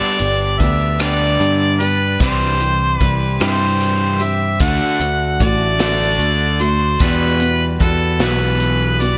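Warm and nostalgic, this brief folk and heartland rock excerpt in G major moves at a slow 50 BPM in 6/8, where an up-front, vintage-toned harmonica carries the melody with vibrato, scooped notes and a touch of delay over a bright, boxy picked archtop acoustic guitar with audible finger squeak, a crunchy double-tracked overdriven electric guitar riff tucked in the background, a direct picked electric bass and an airy country drum kit with punchy kick, hi-hat, rim click and snare, the whole kit treated with gated reverb, all in light reverb with a bright 1980s-style digital sheen as the chords pass from G through C and D to Emadd9.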